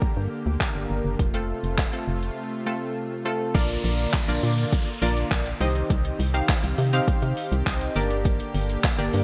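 This summery, upbeat dance-pop excerpt has a straight feel and a bright 1980s-style digital sheen under light reverb. Up front, a deep house drum kit of layered electronic sounds (deep kick, handclaps, hi-hat, shaker and crash cymbal) carries an overdriven edge and a gated reverb. Alongside it sits a hollow, organ-like FM bass with a dark, percussive attack that quickly decays. A punchy, funky polysynth comp built from detuned sawtooth and pulse waves adds a filter pluck and chorus, while a smooth, full-bodied supersaw holds mellow sustained chords in the background under a lush chorus. The comp, supersaw and bass all breathe with sidechain pumping, moving from Gm to F before a sudden silent gap at 2.4 seconds, then opening onto Bb, Cm and back to Gm as a background downlifter sweeps through from 3.5 to 8.3 seconds.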